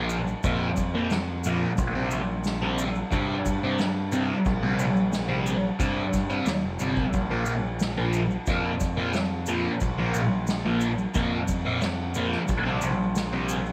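Psychedelic rock with a kaleidoscopic, trippy mood, moving at an unhurried pace in a straight four-beat feel, cut from a longer piece. A thick, dark fuzz guitar, double-tracked and up front, carries the riff from the start, its distortion colored by a phaser as the harmony shifts between Bb5 and C5/Bb. Beneath it a growling picked electric bass, bright and overdriven, holds down the low end throughout. A distant, roomy drum kit played with soft mallets brings a punchy kick, a medium-tuned snare and dark ride cymbal, while a grainy egg shaker sits close and dry in the background. Light reverb and a small room ambience frame the whole performance, which runs about 13.7 seconds.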